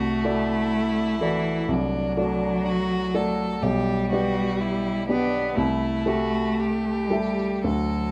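A clear, bowed violin carries the melody with vibrato from the first moment, while a rich cello sings a focused second line and a polished grand piano sits up front with warm accompaniment. This serene, tender slow romantic movement for piano trio unfolds in 4/4 at 55-63 BPM with a supple rubato, passing from D7/C to G/B at 3.6 seconds and Am7/C at 5.6 seconds. Close, detailed microphones and a light reverb frame this 8.1-second passage cut from a longer piece.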